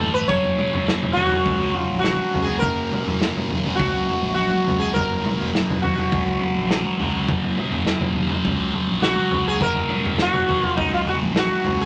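Dark and hypnotic, this short psychedelic rock passage, cut from a longer piece, sets a mellow, buzzing sitar up front on the melody, its sympathetic strings shimmering over a bright, double-tracked fuzz guitar riff coloured by distortion and phaser. Underneath, a round, overdriven fuzz bass sits in the background while a vintage acoustic kit with a punchy kick, medium-tuned snare and toms pumps in a small room with a rolled-off top. Very quiet, high-tuned congas struck with hard hands join at 0.6 seconds, and a moderate studio reverb gives the whole a compact sense of space.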